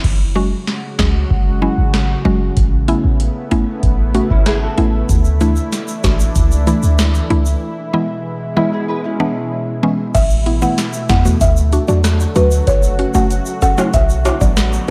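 A straight, bouncy dancehall groove in 4/4 rides on a booming analog drum machine, with a deep kick, crisp snare, metallic hi-hats, rim clicks and crashes, all carrying vintage 12-bit sampler grit and the sound of a large room. Up front beside the drums sits a clean 808-style bass, sine-based, boomy and dark. The mood is sunny. A lush, thick pad of detuned sawtooth voices holds sustained chords with a slow attack, chorus and sidechain pumping. A woody, round FM synth pluck with a noise layer plays accompaniment through chorus and phaser, while a small, fingerpicked nylon-string guitar sounds briefly at the start and then adds arpeggios through ensemble chorus and delay from 4.3 seconds. Egg shaker and timbales with a vintage, band-limited character join at 5.1 seconds, and after a break a buzzing marimba with soft mallets on hardwood bars takes the melody from 10.1 seconds, dry and airy with delay, within a light reverb.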